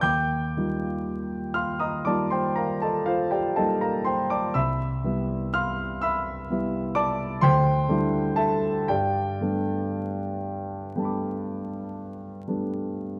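Vinyl crackle and a moderate reverb frame this serene, dreamy excerpt of impressionist classical solo piano, where an up-front concert grand with deep bass and a natural tone moves in a rubato 9/8 at 36-44 BPM in G mixolydian, passing through Ebadd9, Cmaj7 and D9sus4 before arriving at Gadd9 at 8.9 seconds.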